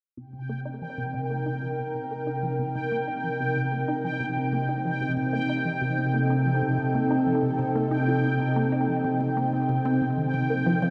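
Bathed in a vast, echoing cathedral reverb, this cosmic, hypnotic ambient passage at 93 BPM in C dorian rests on a single Cm7 chord, where a lush, thick, nasal unison pad holds bright sustained chords up front, a juicy, squelchy blip pluck with chorus, phaser and tape echo repeats a riff in the background as the synth arpeggio sound fades in from 0.2 seconds, and a bubbling stepped-filter texture with shimmer reverb enters high on G5 at 0.5 seconds, all cut from a longer piece.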